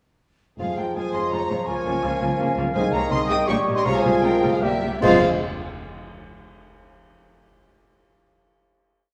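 A lush, vibrato-rich violin section carries the melody in this restless, dramatic romantic movement in F minor, a fast 3/4 with rubato feel, doubled in unison by an airy wooden flute and shadowed in thirds and sixths by a second violin line, while clarinet, bassoon, a mellow French horn section and a dark cor anglais counter-melody from 1.0 s sustain chords over repeated viola notes, cello and double bass, before timpani, bright cymbal swells, crashes and bass drum strokes join at 2.8 s and the whole orchestra lands on a final F minor chord at 5.0 s in a reverberant recital hall.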